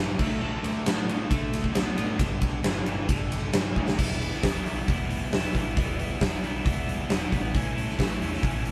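A huge, acoustic arena drum kit leads this driving, swaggering classic rock passage at 135 BPM, sitting up front with a fat snare, punchy kick and bright cymbals as it enters at 0.2 s and throws in a fill at 3.8 s before the harmony moves to Em at 4.0 s. A cranked, double-tracked stack guitar plays the overdriven, picked riff in E dorian over D5, G5 and later A, while a direct, punchy electric bass holds the low end further back in the mix. The band plays live in one stone room with moderate reverb, and lossy compression artefacts colour this short cut from a longer piece.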